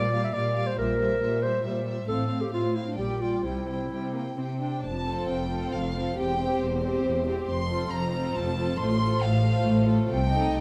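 A rich, focused violin section sings the melody over a soft, sul tasto second violin line, an up-front classical-style clarinet second line, expressive viola accompaniment and a lush, smooth cello bass, with a smooth, even double bass section joining at 0.8 s and the clarinet dropping out at 4.6 s, all in a cheerful, lively, rubato classical-period orchestral movement in three that sits in a wet stone room.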